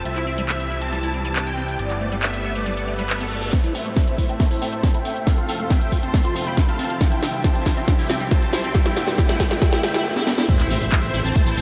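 Uplifting trance, emotional and driving, where a bright, chorused unison pad and a fat analog bass open beneath huge, phased supersaw chords with tape echo, a house drum kit with cracking snare, and a squelchy liquid acid bass in the background. A very quiet reverse cymbal enters at 2.9 s before the bass gives way at 3.5 s to a punchy electronic kick drum for a build-up with filter sweeps on the supersaws and acid bass and a quiet riser. The bass then returns with a very quiet impact for the drop at 10.5 s, with pad, basses and supersaws pumping to the sidechain in a dreamy mix soaked in vast reverb with a faint mains hum.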